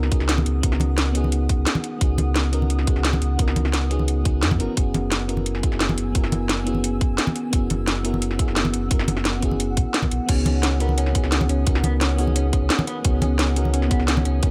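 A deep, sine-like sub bass with an added octave sits up front in this lush, dreamy liquid drum and bass cut at 174 BPM, joined by a tight, layered electronic kick, a drum kit with a cracking snare, metallic hats and crash cymbal, and close acoustic congas set further back. A soft, round FM electric piano with chorus, dub echo and a touch of 12-bit sampler grit plays over a glassy, ethereal FM pad with ensemble chorus and phaser, moving between Db9sus4 and Gb9sus4 chords. At 10.3 seconds a slightly broken-up, compressed electric guitar enters with picked arpeggios trailed by dub echo, all in a light reverb.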